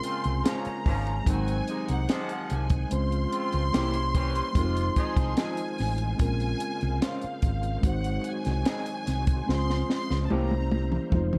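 A round, up-front hollow-body electric bass anchors this cinematic, smooth slice of lush 1970s-style soul in Bb minor at 73 BPM, alongside a compact cocktail drum kit with a punchy kick and high-tuned snare that closes on a fill from 9.5 seconds, a woody, bowed violin section carrying the melody, mellow tine electric piano, gritty overdriven organ with slow rotary speaker in the background, distant horn stabs that stop at 5.8 seconds, ringing metallic vibraphone, and a twangy, slightly broken-up guitar riff, inside a dark, dry production.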